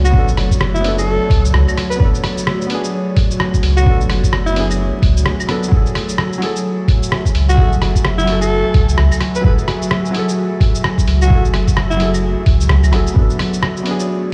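A swung 4/4 groove at 129 BPM drives this melancholic, wistful future garage fragment in F# minor, with a thumpy, pitched-down electronic kick sitting up front beside a muffled, tape-toned sampler kit of claves, hi-hat, rim click and shaker, both in a small room. A deep, round sine sub bass holds the low end with sidechain pumping, while a dark, detuned breathy pad with chorus and 12-bit sampler grit and a felt-muted upright piano, intimate and soft with audible action noise and delay, breathe along with the pumping over Bm7/F# and F#m9 chords. A raspy, gritty alto saxophone carries the melody with vibrato and digital delay, pausing before a brief break at 5.3 seconds and returning at 7.5 seconds. The kick and sub bass drop out at 13.3 seconds, leaving the pad, piano and kit to close. The whole mix is bathed in stone room reverb and vinyl crackle, as if played on a big sound system in a bare room.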